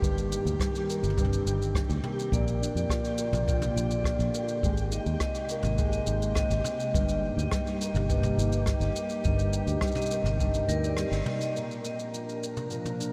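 A warbly, nostalgic tape-like pad and thumb-plucked nylon-string guitar arpeggios open this playful, hopeful folktronica excerpt. Beneath them sit a round, foam-muted fingered electric bass, a brushed jazz kit with rim click, shaker and toms, a boomy kick, and a flickering, grainy texture in the background. A hard-mallet vibraphone with a ringing, metallic tone and delay enters at 2.3 seconds as a second line, all set in a dreamy mix soaked in huge ambient reverb, before a band accent at 11.0 seconds and a filter sweep on the guitar from 11.6 seconds carry it into the closing section.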